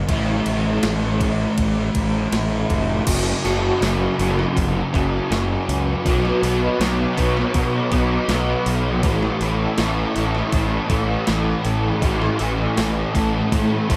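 Wistful and blissful, this shoegaze and dream pop rock excerpt puts a double-tracked, distorted fuzz guitar riff up front over an overdriven fuzz fingered electric bass and a crisp 8-bit digital drum machine with a thumpy kick, the whole mix soaked in a lush hall reverb as the chords move from A5 to F#5 at 3.1 seconds, then to B5 and back to A5.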